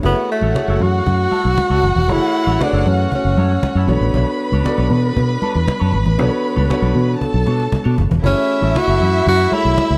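A glamorous, danceable disco groove in straight 4/4 feel, this short cut from a longer piece has a dry, close 1970s studio sound. A round, foam-muted fingered electric bass sits up front, dark and direct, over a woody cajon with faint snares and very quiet, thin-skinned congas played with soft hands. A clean, picked electric guitar with wah and spring reverb stays in the background, while a clear, slightly boxy baby grand piano fills out the harmony, moving from F#m7 to Bm9 at 3.9 seconds, and a bowed chamber violin section with vibrato adds a second line. A breathy tenor saxophone carries the melody up front in a jazz style, with a soft attack, vibrato and scooped notes, playing until 3.9 seconds and returning at 8.3 seconds. A drum fill leads into a new section at 8.2 seconds as the harmony settles back on F#m7.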